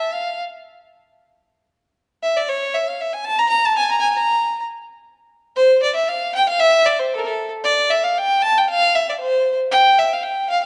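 A dark, warm production places a single bowed fiddle up front in a wet recital-hall reverb, with the top end rolled off for a soft glow. Cut from a longer Balkan folk piece in a straight 2/4, this 10.7-second passage is the fiddle alone, its rich, even tone carrying a light vibrato and a smooth upper register. The playing feels virtuosic yet bittersweet, moving into a new section at 5.6 seconds.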